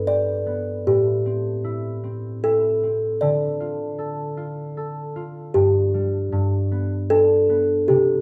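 Tender and gentle, this short fragment of a children's lullaby drifts in a rubato 3/4 at around 77 BPM, with an up-front kalimba singing the melody in woody, hollow, fingertip-plucked tones above a mellow, thumb-plucked concert harp accompaniment that rings through G, Am and Dm chords, a brief chordless stretch at 5.5 seconds, and a return to G, all softened by a moderate recital hall reverb.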